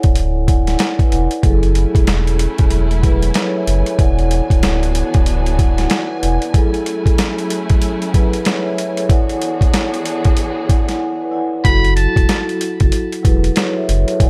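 Boom-bap hip-hop with a moody, gritty feel, this excerpt from a longer piece rides a swung groove that alternates between E9 and F#m9 chords. An up-front, sampler-style drum kit sounds compressed and pitched down, with a thumpy kick, a high-tuned snare and hi-hat. Beneath it, a deep, full sub bass with octave holds sustained notes, dropping out partway through and returning near the close. A vibraphone with soft mallets carries the accompaniment throughout, mellow and airy with a slow motor vibrato and a cassette-tape tint. From 1.4 seconds a distant, lush string section adds bowed chords with vibrato and portamento, continuing through a brief break at 11.0 seconds. At 11.6 seconds a trumpet with metal mute steps forward for a short jazz-style solo, buzzy and breathy with scooped notes, light vibrato and a touch of delay.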